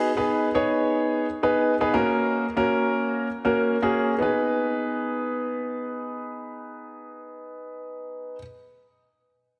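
Confident and energetic, this pop fragment features a concert grand piano playing accompaniment from 0.0 to 8.4 s, its intimate, up-front tone carrying audible action noise, deep bass and long sustain. The harmony moves from G# minor to F# at 1.9 s and returns to G# minor at 4.2 s, where a new section begins. A lush hall reverb surrounds the piano, and a dense, heavily limited modern master gives the recording a polished fullness.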